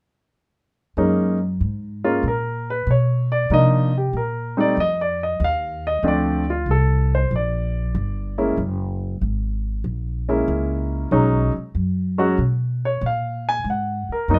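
A 4/4 swing at 95 BPM sets a warm, swinging mood in this jazz piano trio piece, cut from a longer performance, with a grand piano and an upright bass playing together from 1.0 to 14.4 seconds. The polished, present piano carries the melody in short-sustained notes, while the woody, thumpy pizzicato bass sits up front beneath it. Light reverb rounds out the sound as the harmony moves through chords such as F#add9, Cm11, A#maj9 and F#9 before arriving on a G#7 with the third omitted.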